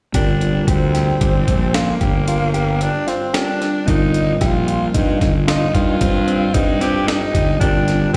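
A growly, fuzz-overdriven fingered bass sits up front in this brooding, driving progressive instrumental in 7/4 at 112 BPM in G minor, alongside a thumpy, gritty breakbeat sampler-style kit with a high-tuned snare, a raspy alto saxophone with vibrato and scooped notes, a bell-like tine electric piano with slapback echo, and a dark, mellow guitar playing arpeggios through plate reverb, the whole band heard live through the venue's PA in a recital-hall space as the harmony shifts from Gm to Eb6/G at 3.9 seconds.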